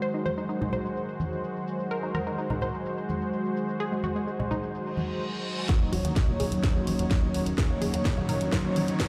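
Opening on a chorused, slow-attack analog pad holding Ab7 chords beneath a detuned, wave-folded unison pluck with filter sweeps and 12-bit grit, soft up-front supersaw stabs, a filtered house kit with a cracking snare and bright close congas, this expansive, dreamy progressive house cut in Eb dorian at 127 BPM pumps in sidechain until a very quiet reverse cymbal at 5.0 seconds leads at 5.7 seconds into an Ebm7 build-up where a punchy, layered kick, a drum fill, a funky sawtooth-and-pulse bass and a supersaw filter sweep arrive, all set in a stone-room reverb as if played on a big system in a bare space.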